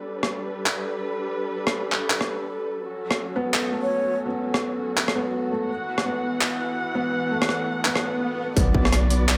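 Half-time drum and bass at 167 BPM with a swung sixteenth feel, this tense, spacious excerpt opens on a muted string section holding dark, veiled chords, bowed con sordino with vibrato, pumping against a sidechain while a low-pass filter sweeps across it until 8.6 seconds. Gritty, pitched-down boom bap drums enter almost at once, handclaps, hi-hat and rim click sitting up front, overdriven and compressed as if re-recorded in a large room. At 3.4 seconds a felt-muted upright piano adds soft, intimate arpeggios with audible action noise and dub echo, and a breathy, hollow jazz flute touches a single note in the background shortly after. The harmony moves from G to F#m and Esus2 before a very quiet electronic swell builds into an impact, and at 8.6 seconds a thick, saturated sub bass lands on B1 with a distorted electronic kick as the chord turns to Bm. A moderate echo chamber reverb gives the studio ambience a sense of depth throughout.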